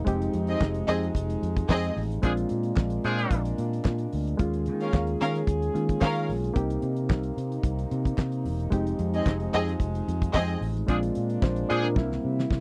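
A straight 4/4 disco groove drives this sultry cut from a longer piece, built on a damped 70s drum kit of kick, snare, hi-hat and handclaps, with a fat snare, tight kick and rolled-off top sitting up front. A round, punchy fingered electric bass anchors the bottom, while a reedy, lightly overdriven electric piano heard through its built-in speakers supplies the accompaniment. A close-miked French horn section holds warm, classical-style sustained chords underneath, and a lush bowed string section with expressive vibrato carries a second line through most of the passage. A clear, tight pop-style horn section in octave doubling punches in stabs at 2.2 and 10.9 seconds to mark band accents, and a drum fill closes things out at 12.0 seconds. The harmony moves through minor-seventh, dominant and suspended chords, captured in a dry, close 1970s-style studio sound with little reverb.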